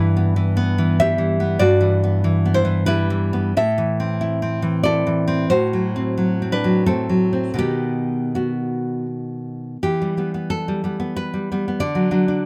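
A rubato three-beat pulse carries this melancholic, intimate fragment of a romantic solo classical guitar piece, where a single fingerpicked nylon-string guitar with a full-bodied, deep tone sits up front in a close, detailed and nearly dry recording that catches each finger squeak, moving from its opening section into a new passage at 9.8 seconds.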